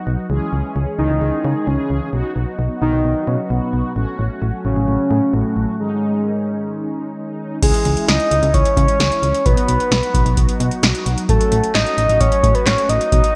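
A soft, octave-layered synth lead carries the melody up front with chorus over a punchy, round FM bass and dark, brassy synth brass treated with chorus and phaser in this nocturnal, driving synth-pop excerpt in C# minor at 131 BPM, moving through C#m, B and F#m/A to a G#sus4 break before an electro analog drum machine with a deep kick, punchy snare and metallic hats enters at 7.6 s, all set in a lush hall reverb with bright 1980s-style digital production.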